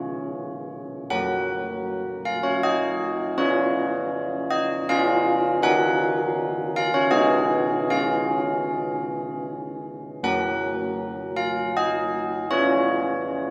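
Old church bells of bronze, clangorous and up front with a beating minor-third overtone, ring alone from F#3 to F#5 in this serene, festive classical bell tune in 3/4, their strokes hanging in a cathedral reverb that lasts 4.6 seconds across a brief excerpt built on simple major and minor chords.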